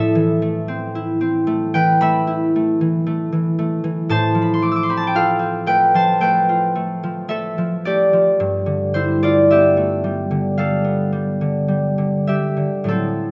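A lone concert harp opens the recording at 0.0 seconds, its fingerpicked notes ringing out from up front in a wistful, mysterious classical solo. The tempo is slow and elastic, moving somewhere between 48 and 58 BPM in 4/4 with a rubato feel, and the instrument is tuned slightly under standard pitch to A4 = 439 Hz. The harp spans a generous range from G2 up to E6, drifting from Amadd9 to Fmaj7/A at 4.1 seconds and then to Gadd9 at 8.4 seconds. A wet recital hall reverb with a 1.5-second decay surrounds the acoustic, warm tone of the strings. The production is dark, with the highest frequencies rolled away, giving the sound a shadowed quality. At 13.3 seconds long, this passage is cut from a longer piece.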